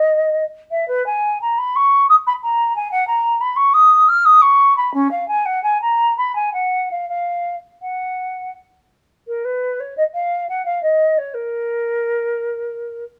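In a flexible, rubato three-beat lilt, this flowing and serene fragment of a baroque-style classical fantasia features a solo silver concert flute, its pure, hollow tone shaded with vibrato and crisp attacks as it roams from C#4 to E#6 under light reverb, moving into a new section at 9.3 seconds.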